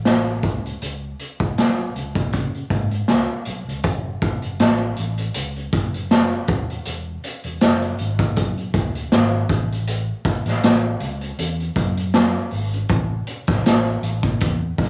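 Nostalgic and sunny, this short cut from a longer indie bedroom-pop piece rides a lightly swung 4/4 groove in which a round, dark fingered electric bass sits under an up-front garage drum kit of hi-hat, boomy kick and medium-tuned snare, its saturated, gritty small-room sound with a rolled-off top set in light reverb and the soft glow of a home cassette recording, the music shifting into a new section at 3.8 seconds.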